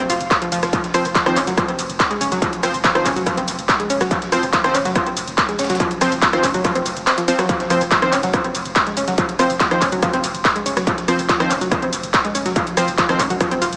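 Industrial and intense, this excerpt of driving peak-time techno runs at 142 BPM in a straight 4/4, holding an F5 chord throughout its roughly 14 seconds. An up-front analog pluck carries the riff between Eb3 and F4, its round, bright sawtooth-and-square tone thickened by a sub octave, chorus, overdrive, a filter sweep and dub echo, all pumping against the sidechain. From the start, a deep, thick saturated sub bass holds F1 in the background under tube saturation and a low-pass filter. A forward techno kit of handclaps, hi-hat, ride cymbal, rim click and shaker, overdriven and echoed, comes in at 0.1 seconds, while a very quiet, gritty breakbeat sampler-style kit of hi-hat, shaker and snare sits far beneath it; a distorted, overdriven electronic kick joins them at 0.3 seconds. From 0.9 seconds a punchy supersaw stab, detuned in unison, spans F3 to C5 with a filter sweep and analog delay. 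The echo-heavy mix sits in a moderate digital echo-chamber reverb with a small-speaker character.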